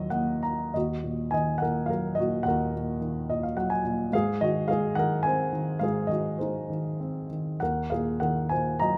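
A dark, mellow baby grand piano plays alone and up front, ranging from Eb2 to Bb5, with audible action noise and short sustain that make it feel intimate in a moderate recital-hall reverb. This lyrical classical fragment, cut from a longer piece, moves in a rubato 3/4 at roughly 90-110 BPM in Eb dorian, with a cool, bittersweet mood. Fills open the passage and return at 3.0 seconds, and the harmony moves from Ebm to Abadd9 at 4.1 seconds before settling back on Ebm.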